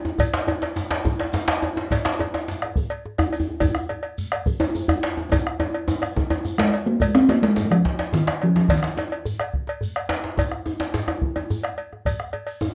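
West African traditional drumming at 142 BPM in a festive, driving 12/8, where a tight, cracking djembe played with soft hands sits in the background beneath a medium-tuned, up-front djembe with metal rattles, joined by a round bombo, a metallic cowbell and a grainy, mellow shekere, while a drum fill at 5.3 seconds leads to a resonant talking drum carrying the melody from 6.6 to 9.8 seconds, all in a rough home demo mix with light reverb.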